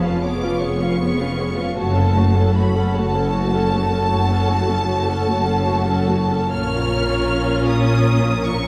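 Melancholic and yearning, this fragment of a slow romantic orchestral movement drifts at 52 BPM in a rubato 12/8, moving from C#7/E# to F#m and on to Bbm. A smooth, rich violin section carries the high melody while a warm, soft-attacked second violin line sits beneath, clear and focused violas fill in the accompaniment, and bright cellos join even-toned double basses on the bass line, all bowed with vibrato. The strings sound set back in a reverberant concert hall with a long decay.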